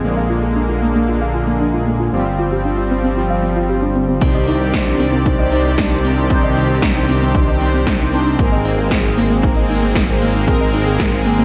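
Moody, nocturnal synthwave at 115 BPM in C minor, cut from a longer piece, opens with an airy supersaw holding sustained chords, a soft round pluck arpeggiating in the background with chorus and digital delay, brassy synth stabs colored by phaser and slapback echo, and a deep, rumbling detuned saw bass, with the supersaw and bass both breathing under sidechain pumping. At 4.2 s the drums arrive: a punchy, tape-warm electronic kick alongside 80s pad drums with a gated snare, metallic hats and crash, all filtered and echoing, as the harmony moves from Bb7 and G7sus4 to Cmadd9 and Abadd9. A lush hall reverb gives the whole a big arena sound.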